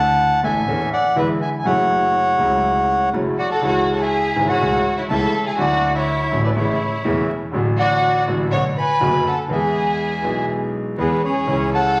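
A reedy, dark bandoneon carries a passionate, nostalgic tango melody up front from the start, alongside a clear concert grand piano with deep, vintage-tinged bass and a bowed double bass sitting earthy and biting in the background with light vibrato. At 3.4 seconds a lush symphonic violin section enters with a smooth, even second line, as the rubato feel at 122 BPM in A major drifts through chords such as Dsus2, F#m7, Dadd9 and Bm. The sound is bathed in wet large-studio reverb with a layer of vinyl crackle, and the passage is cut from a longer piece.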